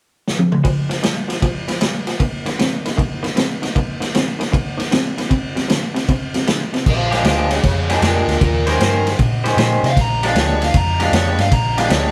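Up-front vintage drums open this swaggering, gritty electric blues shuffle with a short fill, their dark cymbals, medium-tuned snare and tight kick sitting mid-forward with a rolled-off top. At 0.6 seconds a twangy guitar through a small old amp starts its riff, slightly broken-up, compressed and lo-fi, with tremolo shimmering over the picked notes as the chords move through the Bb5, Eb5 and F5 power shapes. At 6.9 seconds the band moves into a fuller passage with richer thirteenth and sixth chords. A smooth, overdriven lead guitar takes a picked solo there, and a round, foam-muted electric bass enters beneath it with a dark, amped tone. The band sounds like it is playing live together in a moderate stone room that lends a natural ring, and the clip is cut from a longer piece.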